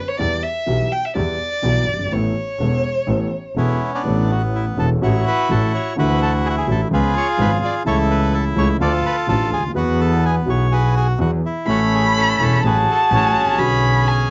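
Passionate and playful, this tango excerpt moves with a loose, rubato feel in 4/4 and is cut from a longer piece. A bowed solo violin opens it, sounding expressive and distant yet up front, with vibrato and portamento, and a cassette-tape color on its tone. A dark, mellow concert grand piano with deep bass and short sustain lays down the accompaniment, also carrying that vintage tape character, while a smooth, even bowed double bass anchors the low end with its own vibrato. At 3.6 seconds the reedy, full bandoneon takes over the melody, close-miked, dry and up front, and the violin returns as a second line at 11.7 seconds over rich added-ninth and seventh harmonies. The whole piece has the soft, dulled top end of a home cassette recording with a light touch of reverb.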